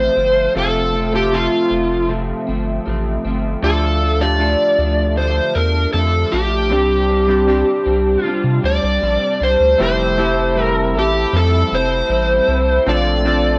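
Worn, warbling old tape colours this laid-back, sunny piece of indie and bedroom pop, cut from a longer track and set in a moderate studio room at 78 BPM in F major. Up front, a dark, overdriven slide guitar carries the melody with lush chorus and slapback echo over a deep round analog bass. Glossy chorused retro synth keys, treated with cassette tape and plate reverb, sit alongside a slightly broken-up electric guitar through a small old amp with analog chorus and drifting pitch in the accompaniment, as the chords move from F through Dm and Csus2 before shifting at 9.8 s to Fmaj9 and Bbmaj9.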